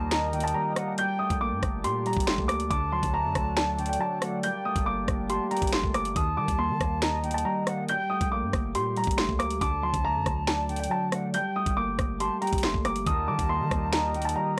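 A dry, gritty cassette-tape recording frames this menacing drill excerpt at 139 BPM in a half-time feel, set in G harmonic minor and cycling through Eb, Gmadd9 and D. A dark, intimate baby grand piano carries the high melody with audible action noise and analog delay, joined by a pure, vibrato-laden concert flute on a second line. Warbling lo-fi synth keys with chorus and a filter sweep sit up front, while a reedy accordion in the background drops out at 6.1 seconds and returns at 13.1 seconds. Underneath, a deep, sine-toned 808-style bass with transformer saturation and an electronic drill kit of knocking kick, sharp snare, metallic hats, rim clicks and finger snaps lend an ominous weight.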